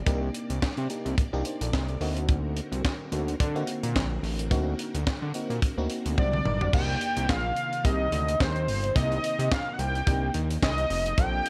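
A swirling, vintage string machine opens this early-eighties boogie funk cut, its sawtooth chords warbling under ensemble chorus and phaser in the background, while a fat analog bass, thick and detuned with a filter sweep, sits up front from the first moment. A glassy FM electric piano and a tight funk drum kit join almost at once: the piano adds bell-like attacks with a noise layer, chorus and phaser, and the acoustic kit, heard in a small room, pairs a high-tuned snare and tight kick with hi-hat, handclaps, toms and crash. The groove has a funky, slick lean, with a light swing on the sixteenths and chords moving from Cm9 to D7b9b13. At 6.2 seconds a drum fill arrives together with a fat analog lead, nasal and bright, with a sub octave, ring modulation, filter sweep and vibrato, carrying the melody up front. At 6.7 seconds the harmony settles on Cm7 as the second section begins, and the dry, close mix keeps every part crisp until the cut ends.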